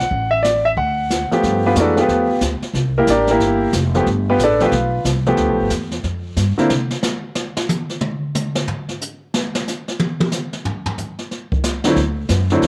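A clear, intimate baby grand piano, woody pizzicato upright bass and a brushed drum kit open this swinging jazz trio fragment with a warm, sophisticated mood, the piano taking a solo from 1.4 seconds over rich extended chords. The piano drops out at 6.7 seconds and the bass just after for a drum solo of brushed snare, hi-hat, toms and a boomy kick, before both return around 12 seconds. The piano and drums sit up front with a cassette-tape color, audible piano action noise and light small-room reverb giving the home recording a close, lived-in feel.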